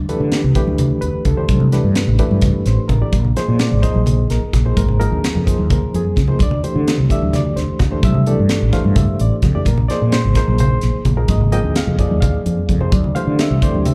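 A round, dark fretless bass sits up front in this intense, driving electric jazz fusion excerpt in 7/8, moving between D9sus4 and Bb9sus4 chords over a tight funk drum kit with a high-tuned snare and drum fills at 6.0 and 12.6 seconds. A barky, reedy electric piano with light overdrive, fast tremolo and slapback echo plays accompaniment, while thin-skinned congas with their own slapback sit in the background. A very quiet, morphing wavetable pad with chorus slips in at 13.6 seconds, and the whole performance carries the feel of a live gig heard through a club's PA in a small room.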